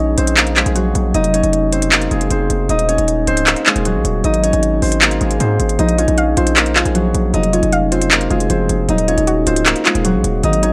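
Light reverb and a digital ambience frame this hard-hitting, menacing trap excerpt at 155 BPM in a half-time feel, moving through Bbm, Fm, Ebm and Ab. A bright, ringing, thumb-plucked concert harp carries the melody with delay over a heavy, saturated 808-style bass, while a trap drum kit with crisp hats and handclaps enters at 0.2 seconds, roughened by vintage 12-bit sampler grit. At 5.8 seconds a soft, round pluck with chorus slips in behind as mellow accompaniment, and the progression closes on Ebmadd9.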